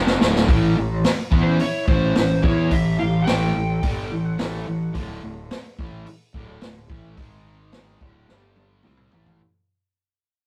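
A vintage drum kit with a punchy kick sits up front in this raunchy, driving blues rock and southern rock excerpt at 108 BPM, with drum fills at the start and near the end. A bright, double-tracked distorted guitar riff and a round fuzz bass drive alongside the drums, and at 1.4 seconds an overdriven slide guitar melody enters above them, with a picked lead guitar through a small cranked amp tucked in the background. The chords move from A7 through D5 and G#5 to A5, and the rough rehearsal-room recording carries a moderate small-room reverb and fades out across its full length.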